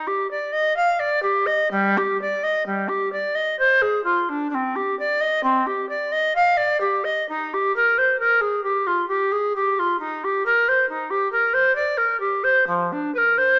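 Classical baroque-style fantasia fragment for solo bass recorder, grave and solemn at 66 BPM in a freely bending 3/4 with uneven beats and rubato, settling into C minor from 10.0 s, the woody, airy tone carrying expressive vibrato and a tongued chiff on its notes, set in a moderate recital hall reverb with a small-speaker sound.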